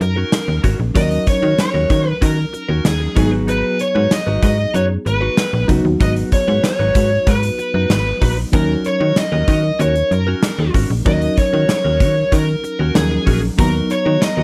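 From the first beat, a full band enters at once in this urgent, nostalgic 1980s-style pop excerpt, moving at 95 BPM in a straight 4/4 in Eb minor. A gated drum kit with a punchy kick, medium-tuned snare and hi-hat sits up front in a bright stone room, joined by a snappy, slap-like FM bass with a metallic attack that carries the low end. A dark, smooth lead guitar, overdriven and up front with slapback echo, sings the melody in a compact upper-middle range. Beneath it, a mellow FM electric piano adds round, warbling accompaniment coloured by chorus and tremolo, while a clean, direct-recorded electric guitar picks a compressed riff with subtle chorus and slapback echo. The harmony moves from Ebm7 to Abm7 at 3.2 seconds, returns to Ebm7 at 8.5 seconds, and shifts to Bmaj7 near the close, all under a light reverb.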